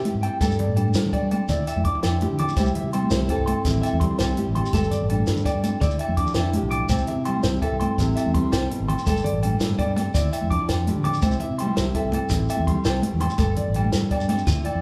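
A slightly broken-up, compressed electric guitar picks arpeggios high above a joyful, danceable highlife guitar band groove in 12/8 at 111 BPM, cycling through Gsus2, Dmadd9 and C in C major. A full-bodied, fingerpicked nylon-string guitar and a dark, round fingered electric bass carry the harmony, while a compact cocktail drum kit with a high-tuned snare and punchy kick drives the beat alongside thick-skinned congas in the background, ringing agogo bells and a grainy shekere. The band plays live in one room under a wet large studio reverb, and this excerpt closes on a drum fill at 14.7 seconds.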